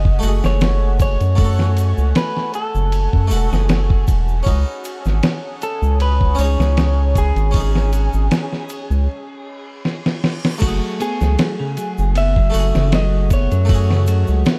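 Trip hop at 78 BPM in F# dorian, cinematic and dark, where a slightly broken-up electric slide guitar carries the melody with dub echo over a brilliant, plucked harpsichord with harmonic tremolo and tape echo, a moody sawtooth pad with 12-bit grit in the background, an up-front round analog bass, a gritty sampler-style drum kit with a thumpy kick and fat snare, a faint egg shaker and a very quiet reversed swelling texture until 9.1 s, before a break with a reverse cymbal and drum fill leads at 10.6 s into a section where a clean, phased electric guitar adds picked arpeggios, all in a dark, dry production.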